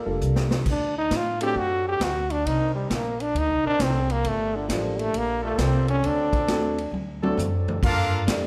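This big band swing excerpt in G minor moves at 134 BPM with a swinging, dramatic feel. A brilliant, punchy solo trombone carries the melody up front, its forceful jazz phrasing marked by scooped notes and light vibrato, until about 6.9 seconds. Behind it, a soft-attacked trombone section holds sustained chords in the background, while a dark, mellow grand piano with long sustain fills in the accompaniment. A woody pizzicato upright bass with steel strings anchors the harmony, and a roomy big-band drum kit with dark cymbals, a medium-tuned snare and a boomy kick adds fills at the start and near the end of the solo. At 7.8 seconds a clear, smooth-topped trumpet section takes up the melody, with a second trombone section on a second line beneath it, as the harmony returns to Gm9, all set in a moderate recital-hall reverb.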